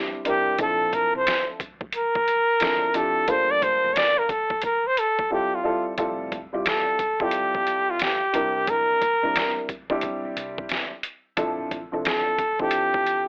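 Smooth and warm, this jazz-hop cut from a longer piece moves at 89 BPM in 4/4 with swung sixteenths, set in F major. A breathy flugelhorn carries the melody up front from 0.3 s, its soft attack, whispered vibrato and intimate jazz phrasing giving it the feel of a solo through the first half. Beneath it, a dark, mellow upright piano with a woody, vintage tone plays chords such as Bbmaj9#11, Gm9 and Fmaj9, while a growly, round fretless electric bass with a hollow-body character sits in the background. The trip hop sampler-style drum kit is up front, pitched down and compressed, with a thumpy kick, a medium-tuned snare and hi-hat, all roughened by overdrive and 12-bit sampler grit. A brief silent gap just before 6.0 s leads into a second section, and the whole mix carries a telephone-like coloring inside a moderate studio reverb.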